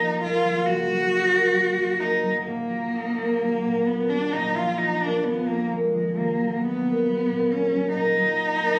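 In a rubato 4/4 that drifts between 63 and 72 BPM, this short cut from a longer romantic classical piece for cello and harp unfolds in E-flat minor with a yearning, solemn mood. A rich, up-front solo cello carries the bowed melody with vibrato, soft attacks and expressive portamento, while the concert harp's thumb-plucked accompaniment rings out beneath it, acoustic and close, as the harmony moves from Eb minor over Gb through Bb and back to Eb minor. Both play throughout the 8.8 seconds, caught on a phone in a reverberant recital hall with a murmur of club ambience around them.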